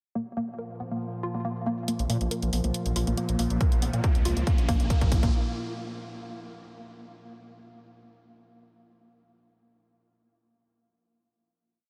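A straight 4/4 pulse at 139 BPM drives this short, dark peak-time techno piece. It opens with overdriven electronic shaker and hi-hats, low-pass filtered and pumping with sidechain compression, together with a woody, wave-folded pluck playing a repeating 12-step riff that drifts against the bar, colored by tube saturation, analog chorus and delay under a filter sweep. Moments later a mellow, detuned analog drone with chorus settles beneath it. At 2.0 seconds a gritty, nasal synth bass rolls in with sixteenth notes as the build gets underway. A riser joins, and a distorted, up-front four-on-the-floor kick lands at 3.6 seconds with a drum fill. The mix is soaked in a huge ambient reverb, lending the driving track a dreamy atmosphere around a Bb chord.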